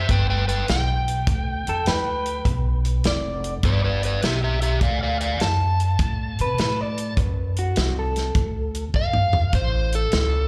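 An overdriven slide guitar with slapback echo carries the melody over a woody, growly pizzicato upright bass from the start of this laid-back, soulful electric blues shuffle at 102 BPM in D mixolydian, joined by a dry, tight soul drum kit with a rolled-off top and, at 1.7 seconds, a slightly broken-up, lo-fi picked electric guitar through a small old amp with its own slapback, the harmony moving from G7 to D7 before a drum fill at 9.0 seconds leads to A, the mix sounding like a live gig heard through the venue's PA with club reverb.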